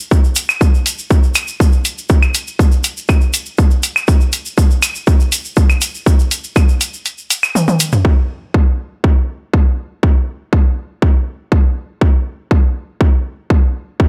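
A straight 4/4 techno groove at 121 BPM is driven by an up-front, layered, overdriven electronic kick alongside a grainy, bright egg shaker, with a punchy, tape-warm analog drum machine joining moments later on claves, low-pass-filtered hi-hats and low-pass-filtered toms, for a hypnotic, dramatic mood. The kick drops out at 7.1 seconds and a drum fill arrives at 7.6 seconds. From 8.0 seconds the kick carries on alone to the end of this cut from a longer piece, all in a dry mix with little reverb.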